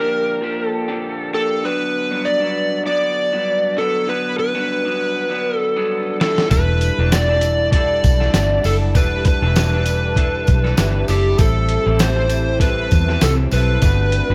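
A hazy, dreamy stretch of indie bedroom pop at 98 BPM in G major opens with an overdriven slide guitar carrying the melody up front, coated in analog chorus, slapback echo and plate reverb, over a dark, slightly broken-up electric guitar played through a small old amp with subtle chorus and vibrato. A muffled, tape-warm sampler-style drum kit with a thumpy kick arrives at 6.2 seconds, joined at 6.5 seconds by a round, foam-muted bass up front and a jingly tambourine tucked in the background, all riding a light 16th-note swing through chords moving from Gmaj7 to Em11 and Am7. At 7.6 seconds an ethereal, airy pad with slow attack, tremolo and ensemble chorus settles softly behind the band, adding a mellow glow to this section of a longer piece.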